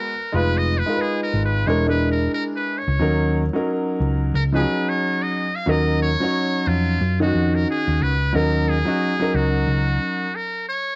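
Vinyl crackle with a dulled top end and light reverb frames this mellow, nocturnal jazz-hop excerpt at 90 BPM in Eb minor with a swung 16th-note feel, where a buzzy, metal-muted trumpet plays a forceful jazz solo with light vibrato until 8.3 seconds over a woody, intimate upright piano with audible action noise and a round, dark hollow-body electric bass that enters at 0.3 seconds, as the harmony moves through Fm7b5, E7#11 and Ebm7.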